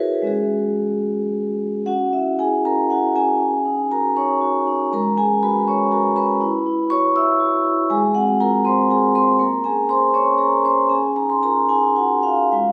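Rubato in 6/8, with the dotted-quarter pulse drifting between 70 and 82 BPM, this flowing, hypnotic contemporary classical piece for solo vibraphone in C# dorian is cut from a longer work and runs 12.7 seconds. Played with soft mallets and the motor off, the vibraphone sounds mellow and metallic, ringing up front from G#3 to E6 as it opens on G#7sus4, settles onto C#m at 1.9 seconds, and moves through Esus2 and Bbm9 to close on Db69. A phone recording in a stone room adds a wet reverb, ambience and compression.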